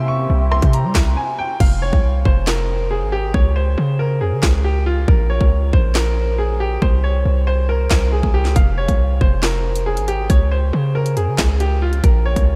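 A tense, dark drill excerpt opens with an intimate, woody upright piano carrying the melody, its audible action noise shaped by a low-pass filter and trailed by a diffuse ambient delay. In the opening moments, a smooth, gliding sine lead with vibrato, portamento, chorus and delay sits in the background, and a detuned sawtooth pad with a resonant filter swell and chorus holds sustained chords. Up front, a punchy, heavy 808-style bass with a sine core and noise layer anchors the F harmonic minor harmony at 138 BPM in a half-time feel. The electronic drill kit arrives at 0.5 seconds with a hard-clipped kick, sharp snare, handclaps, rim clicks, crash cymbal and bright hi-hats, re-recorded in a large room. After a short break, the piece moves from a C chord to a darker cycle of Fm, Dbmaj7(no3) and Bbm from 1.6 seconds, with the hi-hats muted until 8.6 seconds, all under a light reverb.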